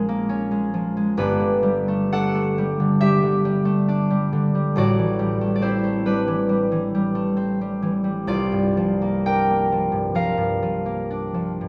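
Bathed in a wet recital-hall reverb, this brief, peaceful excerpt of a classical solo piece features an up-front, ringing concert harp, fingerpicked across G1 to G5 at a serene, rubato 60-70 BPM in 4/4, drifting through Bbm7, Gadd9, Am7 and C9sus4 chords over its 11.7 seconds.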